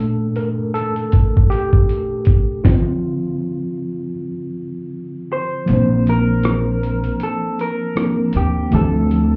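This nostalgic, cosy lo-fi hip hop fragment opens on a worn, slightly out-of-tune tine electric piano heard through built-in speakers, softened by a low-pass filter. A gritty, compressed sampler-style drum kit quickly joins at 79 BPM in 4/4 with a lazy 16th-note swing, its thumpy kick, medium-tuned snare, rim click and hi-hat sounding re-recorded in a small room. The electric piano takes a solo role through the opening half in Bb major, moving from Bbmaj7 to Dm7, and the band breaks off for a stop from 2.6 seconds. At 5.3 seconds a slightly broken-up, picked electric guitar enters with a faint melody through a small old amp, filtered and trailed by tape echo. A dark, woody pizzicato upright bass arrives at 5.7 seconds as the harmony turns to Bbadd9, while the kick drops out for the rest of the passage. The whole mix has a muffled, through-the-wall quality with a cassette tape character and a club reverb, and it ends abruptly as a cut from a longer piece.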